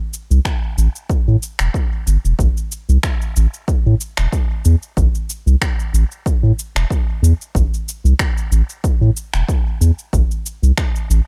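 A deep, round sub bass dominates this organic downtempo fragment, its sine tone sitting up front with a fast attack and sustained notes that span from E1 to A2 while sidechain pumping makes it breathe. Set in A minor at 93 BPM in 4/4, with a light swing of 54% on the sixteenths, the piece has a meditative, warm mood. A punchy, layered electronic kick drum enters at 0.5 seconds and sits prominently in the mix, while electronic cabasa and finger snaps, present almost from the start, add a softer, more distant layer of produced texture. Both percussion parts carry an overdriven edge and sit in studio reverb. The whole recording is steeped in digital ambience and an echo-heavy mix, with a brief opening passage giving way to a longer second section at 2.4 seconds.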